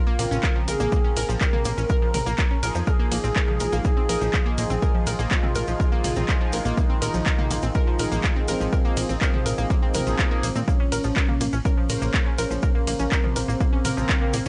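A smooth portamento lead with lush chorus and tape echo opens this driving, dramatic melodic techno excerpt over a sweeping, resonant phaser pad and gritty 12-bit analog plucks, joined at 0.2 s by bold, brassy synth stabs, a funky wave-folded bass, a punchy, tape-warm drum machine of handclaps, hi-hat, ride and toms, and a grainy cabasa in the background, with an up-front electronic kick arriving at 0.4 s, sidechain pumping on the synths and bass, a faint electronic swell near 9.9 s, and a dry, cassette-worn hardware sound throughout.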